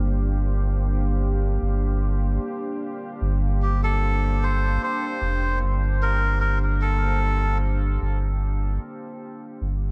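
Ambient dub with a hazy, spacious mood, cut from a longer piece, where a deep, dark pad with detuned sawtooth layers, chorus and its own reverb holds sustained chords moving from Gm7 to Bbmaj13/F over a round, sine-like sub bass that sits up front throughout. A reedy, breathy melodica enters at 3.6 seconds with a nasal, band-limited vintage tone and dub echo, playing a short melody until 7.6 seconds. A small room ambience surrounds the parts, and a fade-out begins at 7.5 seconds.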